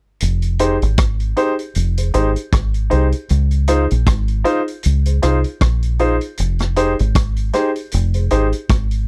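Bittersweet and longing, this short lovers rock reggae excerpt moves at an unhurried 78 BPM in F minor, with a gently swung sixteenth-note feel over chords that shift from Fm7 to Dbmaj7 and back. A deep, round, foam-muted fingered electric bass sits up front alongside a vintage drum kit with a punchy kick, rim click and hi-hat, its top end rolled off. From 0.6 seconds a warm grand piano adds accompaniment in its middle register, all captured in a dry, close 1970s-style studio sound with a faint mains hum.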